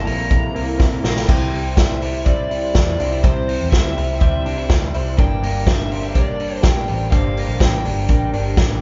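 Jangly indie pop with a restless, bittersweet mood, heard in a short cut from a longer piece played live by a band in one large studio room with a moderate reverb and a dusky top end. An up-front vintage drum kit with a punchy kick and medium-tuned snare drives the straight 4/4 groove, with hi-hat and crash cymbal, and a drum fill from 0.8 to 1.3 seconds leads into the main section. Beneath it, a foam-muted vintage electric bass sounds dark and round, while an electric guitar through a small old amp plays slightly broken-up, fingered arpeggios with spring reverb. A very quiet picked twelve-string acoustic adds boxy, shimmering octave-doubled jangle, and warbly lo-fi synth keys with chorus sit mellow and nostalgic in the background. On top, a dark, overdriven lead guitar through a small cranked amp carries the melody as the harmony moves from C7 to C and later to Gm.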